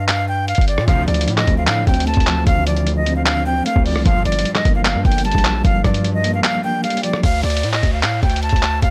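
A breathy, reedy concert flute with vibrato and analog delay carries the melody over a brooding, dark half-time trap groove. Beneath it sit a distorted, saturated 808-style bass and a muffled, pitched-down sampler-style kit of thumpy kick, hi-hat, handclaps and rim click. From 0.9 seconds a slightly broken-up electric guitar with harmonic tremolo fills in the chords, while a fat, nasal, detuned sawtooth polysynth stabs twice in the background; after a break at 6.4 seconds, an electronic downlifter closes this dry, gritty hip hop fragment from 7.2 seconds.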